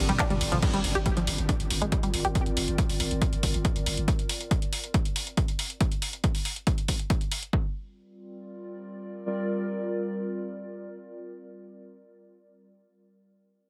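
Heavily compressed with a squeezed, radio-like quality in a digital space, this fragment of driving peak-time techno in G minor runs at 139 BPM in a straight 4/4 with a hypnotic pull. A punchy electronic kick sits up front beside a layered techno kit of metallic hats, handclaps, ride, crash and toms; both are re-recorded in a small room, and the hats, cymbals and toms carry sidechain pumping. A growling, buzzy 808-style bass with a fast attack decays under a low-pass filter and sidechain pumping. A tight, nasal sequenced synth built from detuned sawtooth and pulse waves plays a riff through chorus, tube saturation, tape echo and sidechain pumping, with a filter sweep running over it from 0.6 to 2.4 s as a very quiet electronic impact sounds. A resonant drone with moving overtones sits briefly in the background, while a warbling, lo-fi pad of detuned square and triangle waves with ring modulation spreads a dark, nostalgic haze through chorus and reverb, fading out from 0.6 to 5.8 s.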